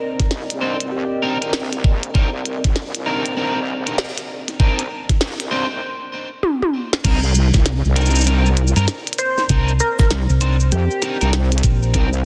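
Glitch hop with a swaggering, gritty mood and a swung 4/4 groove, built on a deep, ring-modulated analog pad that holds a Cm9 chord in the background, a knocking, tape-warm kick and a glitchy kit of tiny snare, clicky hats, shaker, toms and crash, all up front. A heavy, saturated wobble bass drives underneath while slightly broken-up electric guitar stabs pulse with sidechain pumping and delay, and a tearing oscillator-sync lead with 12-bit sampler grit appears at the start and again from 9.2 seconds. After a build-up with a break and drum fill, the drop lands at 7.0 seconds, and a round, punchy hollow-body electric bass joins at 8.8 seconds in this dense, heavily limited excerpt cut from a longer piece.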